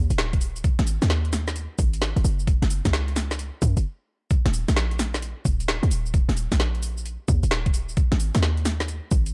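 A skippy two-step garage groove swung at 65% on the 16ths drives this 131 BPM UK garage excerpt in Eb minor, carrying a late-night mood. An up-front garage drum kit of metallic hi-hats, shaker and a woody snare runs from 0.1 seconds, layered and overdriven, while a separate electronic kick adds a knocking, gritty thump from 0.3 seconds. Underneath, a short 808-style bass moves between Eb1 and Gb2 with a punchy, tight sine tone, a noise layer, a fast attack and a decaying tail. The music halts briefly at 3.8 seconds before dropping back in at 4.3 seconds for the second half of the cut. The production is dark and dry, with little reverb, keeping the bass and drums close and direct.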